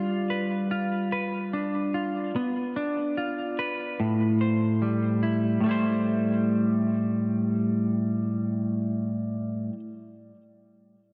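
This dream pop fragment, hazy and ethereal, is carried entirely by a single semi-hollow electric guitar in a straight 4/4 feel. Its clean, fingered tone is compressed and up front, with a warm hollow-body character, and it ranges from A2 up to C5. A subtle chorus and a digital delay add gentle shimmer, while a lush hall reverb with a 2.1-second tail bathes the guitar in a wet, spacious glow. The harmony drifts from G7 to Bdim at 2.3 seconds and settles on Am7 at 4.0 seconds, and a new section begins at 5.6 seconds. The dark, warm production makes this short passage, lifted from a longer piece, feel like a soft, floating daydream.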